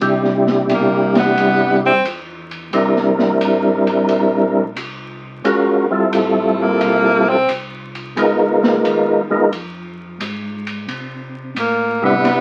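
Greasy and soulful, this soul jazz organ trio cut swings at an easy 88 BPM in C major. An up-front percussive tonewheel organ carries the melody with round tone, slow rotary speaker and chorus vibrato, while a mellow organ bass with key click sits low beneath it and an open, dark-toned drum kit keeps hi-hat, ride and snare in a small-room glow. A breathy, subtoned tenor saxophone solo cuts in with scooped phrases at 0.7, 6.2 and 11.6 seconds over chords moving from Cmaj7 through Fmaj7 and Db13, all heard through the crackle of a very old 78 rpm record.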